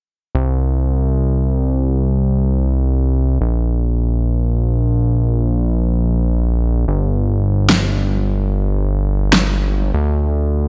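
In free time, this emotional, lush future bass fragment, tuned to A4 = 441 Hz, is carried by a fat analog bass that sits up front from 0.3 to 10.7 s, its detuned sawtooth tone thick, saturated and evolving, with a fast-attack filter pluck that sustains between G1 and D2. An overdriven, layered electronic snare cuts in from 7.7 to 9.4 s, fat and up front, re-recorded in a small room. The mix stays dry, with little reverb.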